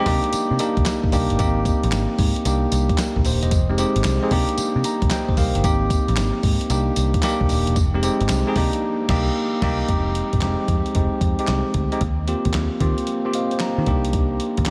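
A dreamy mix soaked in the long tail of a cathedral reverb frames this slick, punchy new jack swing cut in C minor at 113 BPM, taken from a longer piece, its 16ths swung hard. Up front, a bright, bell-like tine electric piano comps through Cm7, Abmaj7 and Fm7 changes, adding fills at 4.6 and 13.1 seconds, while a dark, round, foam-muted picked bass and a gritty, tape-warm sampler-style kit with thumpy kick, medium-tuned snare, hi-hat, handclaps, tambourine and crash cymbal hold the groove. A band accent at 8.8 seconds sets up the second section at 9.9 seconds, which moves through Fm7 and Eb69 before landing back on Cm7.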